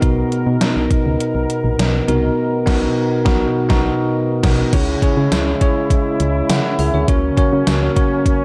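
Dramatic and moody, this short cut from a longer 1980s-style pop piece moves at 102 BPM in C# dorian, with a bell-like tine electric piano up front over a smooth-topped brass ensemble holding sustained chords, a punchy, round FM bass that stops at 7.9 seconds, and a thumpy, overdriven drum machine with a gated reverb snare, crash, hi-hat and tambourine, all set in a dark production with light digital ambience, a band accent from 2.4 to 4.7 seconds, and chords shifting from Bmaj7 to C#m and F#/C#.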